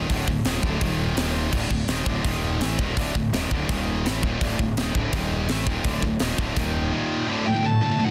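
A pair of bright, picked high-gain guitars drives this relentless, dark heavy metal fragment, one sitting up front as they churn through a low riff that shifts between D5 and Eb5 power chords. Beneath them a fingered electric bass adds a growly, fuzz-soaked overdrive, while a tight metal drum kit, polished and airy with bright cymbals, a high-tuned snare and a tight kick, pushes a straight 4/4 pulse until about 6.7 seconds. At 7.3 seconds, as the harmony settles on D, a pipe organ with strings celeste stops slips into the background with soft, shimmering sustained chords. A distorted lead guitar then cuts in up front at 7.5 seconds with a brief high melody. The sound is dry and dense, with a heavily limited modern master, and the passage is cut from a longer piece.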